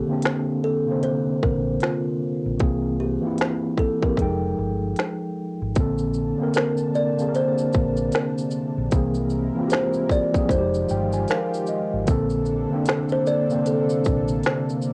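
The mellow tine electric piano sits up front with a clean tone through its built-in speakers and carries cassette-tape coloring as it lays down the accompaniment across this short excerpt of a dreamy lo-fi hip hop piece in Bb major at 76 BPM, with a 16th-note swing. A woody, ringing kalimba carries the melody with soft fingertip plucks, also tinted by cassette tape. The organic electronic drum kit enters at 0.2 seconds, also up front, with a tight kick, crisp hats, snare, finger snaps and shaker roughened by vintage 12-bit sampler grit, while a dark, round, foam-muted fingered bass joins at 1.4 seconds with punchy transformer saturation. At 5.8 seconds a smooth, detuned sawtooth pad with a slow attack and chorus slips in underneath with sustained chords. The harmony cycles through Bbmaj9, C7b13 and Fm9 in a modest room that sounds like a home cassette recording, keeping the mood mellow and dreamy.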